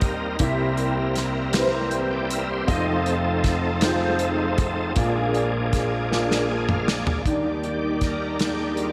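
A lush, reverb-soaked hall sound wraps this short cut from a longer slow gospel piece in Eb major, moving in an unhurried 6/8 at 53 BPM with an uplifting, jubilant spirit. Up front, a concert grand piano carries the accompaniment with deep bass and long sustain, softened by an ensemble chorus. Beside it, a tonewheel organ holds sustained chords through a slow rotary speaker, its tone full and shouting with light overdrive, chorus vibrato and audible key click. A soul drum kit with a tight kick, medium-tuned snare, hi-hat and toms sounds close and small-roomed, its top gently rolled off. The harmony moves from C7 to F7 to Bb7, and around 6.1 seconds the drums and organ both play fills. The organ then takes a solo from 7.3 seconds as the harmony arrives on Ebmaj7, while a smooth, bowed string section enters at 7.2 seconds, sitting in the background.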